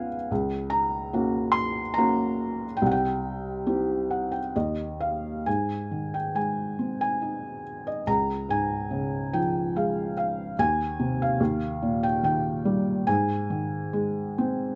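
A flexible, rubato three-beat pulse drifts between 65 and 74 BPM, giving this fragment of a lyrical classical solo piano piece an unhurried, peaceful sway. A felt-muted upright piano carries everything alone, ranging from C2 to C6 with a mellow, intimate tone that sits close and up front. The opening harmonies move from Gb over Db to C, and a brief felt piano fill from 3.7 s leads into the settled Ab major that takes hold at 5.5 s. From there the chords pass through Db, Ab over Eb and Eb before returning home to Ab, and the fragment ends at 14.8 s. The instrument is tuned slightly low, to A4 = 436 Hz, and a moderate studio ambience with a dark, warm production frames the muted sound.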